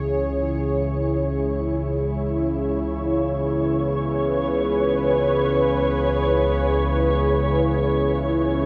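A deep, moody analog pad holds sustained C# minor chords up front over an evolving, detuned sawtooth drone with chorus and phaser, while a grainy, flickering granular texture enters at 1.1 seconds in this desolate, cavernous dark ambient drone excerpt in free time, all soaked in a huge, dreamy reverb.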